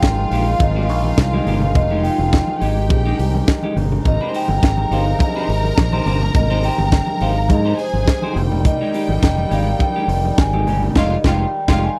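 A dry, close recording in a 1970s studio style carries this celebratory disco excerpt at 104 BPM, built on Fm9 and Abmaj7. A tight funk drum kit with a high-tuned snare sits up front beside a fingered electric bass, while a mellow, ringing vibraphone played with soft mallets carries the melody over a lush, bowed string section and a reedy pedal harmonium in the background. A clean semi-hollow electric guitar with spring reverb and distant, softly played congas fill out the groove before the band hits an accent at 11.0 s.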